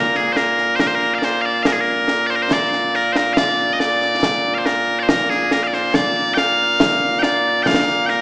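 Scottish traditional pipe music in a stirring, ceremonial 3/4, this short cut from a longer piece sets loud, piercing bagpipes up front carrying a continuous solo melody over close, dry concert snare and bass drum with dark cymbals, all heard in a reverberant church or concert hall with a small-speaker sound.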